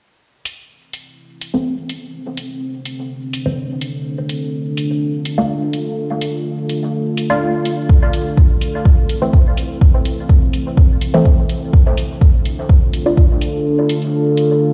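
An overdriven electronic hi-hat opens this deep, hazy dub techno excerpt at 125 BPM in A minor, soon joined by muted, detuned sawtooth chord stabs with phaser and dub echo, and a dark, moody pad of chorused, sustained chords under a filter sweep, both pumping to the sidechain as the harmony moves between Am and Dm. An up-front, layered kick enters at 7.9 seconds and drops away at 13.3 seconds. The whole piece sits in stone-room reverb, as if played on a big sound system in a bare room.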